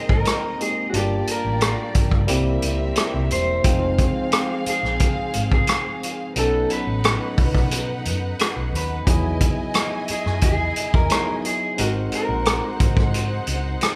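Warm and smooth, this lush 1970s-style soul passage, cut from a longer piece, moves at an easy 88 BPM in a straight 4/4. The melody comes from a dark, slightly broken-up electric guitar through a small old amp, picked with a lo-fi edge in a narrow range from Gb4 to C5. Alongside it, a symphonic violin section carries a bowed second line with vibrato and an even, silky top, while a barky tine electric piano, bright and lightly overdriven, fills in the accompaniment. A round, dark hollow-body short-scale bass, played with the fingers, anchors the low end, and an up-front vintage drum kit with a tight kick, hi-hat and rim click sits mid-forward with a rolled-off top. The chords drift from Abmaj9 through Gm7, C7 and Fm7 to B7, Emaj7 and Ab7, with the band playing live together in one large studio room wrapped in moderate reverb.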